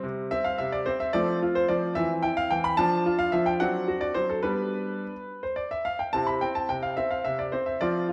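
A graceful, cheerful classical-period piano sonatina in C major and a straight 6/8 at 72 BPM (dotted quarters), this short passage cut from a longer piece features a solo baby grand piano, clear, intimate and up front with audible action noise, ranging from C3 to B5 through a cadential progression from C to F, Dm/F, D7/F# and G before settling home on C at 6.1 seconds, all set in a wet recital-hall reverb with a dark, warm production.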